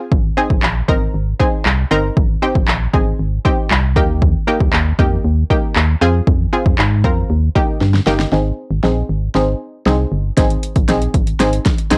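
A round, detuned analog pluck with chorus, sidechain pumping and a filtered cassette-tape tint opens this carefree, upbeat dance-pop excerpt at 117 BPM in Ab major. It is joined almost at once by a hollow, dark, organ-like FM bass that also pumps and by an overdriven deep house drum kit with a punchy kick, fat snare, handclaps and metallic hi-hat. The chords move from Ab through Eb and Fm, and a drum fill at 7.8 seconds leads into a build-up from 8.3 seconds, where a filter sweep runs across the pluck and the drums keep filling until 12.0 seconds, all set in light reverb with the homespun character of a cassette recording.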